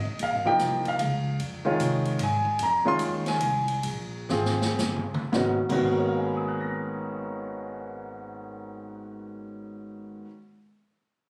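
This modal jazz fragment in G# dorian moves in a swung 3/4 at 106-150 BPM, with a cool, searching mood and tuning set to A4 = 443 Hz. A warm, open baby grand piano sits up front, comping through A#m11 before settling onto G#m11, while a woody, growly pizzicato upright bass with steel strings anchors the low end. A swinging big-band drum kit with a medium-tuned snare, boomy kick, hi-hat, ride, crash and toms sits further back in the balance. The tempo eases back from 2.6 s, a drum fill arrives at 4.3 s, and the drums drop out at 5.8 s, leaving piano and bass to carry the closing section. Captured on a phone in the room, the sound carries a moderate club reverb and compression.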